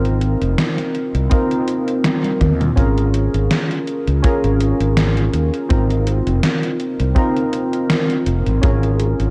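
Dark, cassette-tape production with light reverb frames this woozy, dreamy vaporwave fragment in Ab major at 82 BPM with a gentle swing, where warbling, detuned lo-fi synth keys with chorus and tape echo trade Ab6 and rootless Eb7sus4/Ab chords over a bright, tube-saturated fretless electric bass and an overdriven, sampler-style 80s drum machine whose gated-reverb snare, hi-hat and toms play a fill from 2.0 to 2.8 s, joined by a punchy acoustic kick from 1.3 s.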